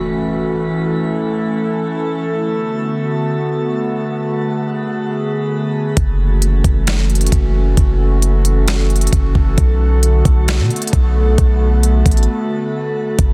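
A half-time 4/4 groove at 133 BPM anchors this spacious, melancholic cloud-rap excerpt, where a faint electronic impact opens over a dark, warbling, detuned pad with chorus and built-in reverb sustaining F#m7 and Bm7 chords from the start, before a deep, mellow sine 808 bass and a smooth R&B drum kit with knocking kick, deep snare and silky hats enter up front at 6.0 seconds, leading to a break at 12.3 seconds under a dense, heavily limited master.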